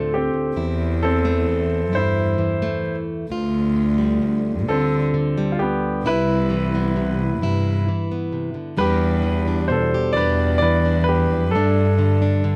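A clear, polished concert grand piano carries the melody over fingerpicked plugged-in steel-string acoustic guitar from the start of this heartbroken, intimate folk piece in a slow 6/8, joined at 0.6 seconds by a single bowed cello whose airy, softly attacked bass line has a light vibrato, all caught up front by close, detailed microphones in a dry room as the harmony moves from Dm7 through G7sus4/D, Cmaj7 and Em7 to a closing Gsus2.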